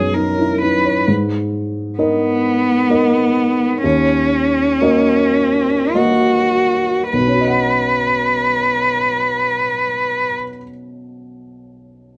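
A rubato feel in 3/4 at 50-66 BPM slows over the first 7.1 seconds of this intimate, hopeful neoclassical passage in B major, cut from a longer piece, where a dark, mellow upright piano with woody tone and audible action noise accompanies up front while a single bowed cello, rich and expressive with vibrato and portamento, carries a second line through chords of Badd9, G#madd9 and D#m7 under light reverb, until the cello stops at 10.3 seconds and the piano closes alone at 12.2 seconds.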